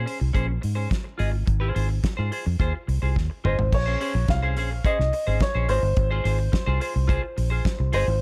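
A celebratory, joyful disco excerpt, where a punchy, growly fingered electric bass sits up front beside a damped 70s drum kit with a fat snare and tight kick, a clean, scooped semi-hollow electric guitar with subtle chorus plays accompaniment over Bbm9 and Ab6 chords, and during a drum fill a baby grand piano with long sustain enters at 3.5 seconds carrying the melody in a dry, close room.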